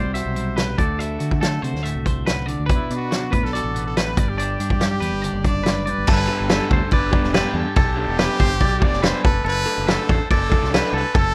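A brilliant, present trumpet carries the melody with vibrato and scooped notes in this playful, intricate math rock and midwest emo piece at 142 BPM in G major, moving through chords such as Cmaj7#11, D9 and Gmaj7. Beneath it, a twangy electric guitar picks clean arpeggios through tape echo, and a bright, compressed twelve-string electric guitar adds picked accompaniment until 7.8 s. A round fingered bass sits alongside a loose indie drum kit with a punchy kick and dark cymbals that is up front in the mix, and at 6.3 s an overdriven, double-tracked garage guitar enters with a lo-fi riff, all within the small room ambience of a rough home demo.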